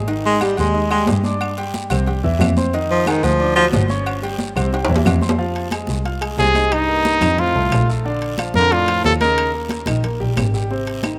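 A clear, punchy trumpet carries the melody from 6.4 to 9.5 seconds in this driving, sultry Afro-Cuban jazz excerpt in F minor at 181 BPM, with a mellow baritone saxophone, full of scooped notes, beneath it after opening the passage with a solo. A bowed double bass with a reedy gut-string tone sits up front under a polished concert grand piano with audible action noise and long sustain. Ringing agogo bells and timbales, bright high-tuned congas, a raspy guiro and woody claves drive the percussion, with a drum fill at 4.7 seconds, all within a rough home demo mix and a lush hall reverb.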